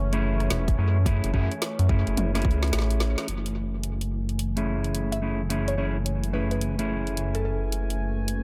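Playful, funky glitch hop at 108 BPM in F# minor with a swung 16th feel, opening on an F#m9 chord as a smooth, warbling analog pad holds sustained chords and a dark, clean electric guitar plays filtered, delayed stabs, while a rubbery, nasal square bass sits up front until 3.2 seconds, a swirling, thick, saturated saw bass with phaser carries the low end from 0.5 seconds, a tight electronic kick punches briefly alongside a drum kit of woody snare, bright hats, rim clicks and toms with a drum fill and band accent near 3 seconds, and a woody, percussive wave-folded pluck adds a chorused, echoing melody in the background from 5.1 seconds, all set in a light digital ambience with an echo-heavy mix.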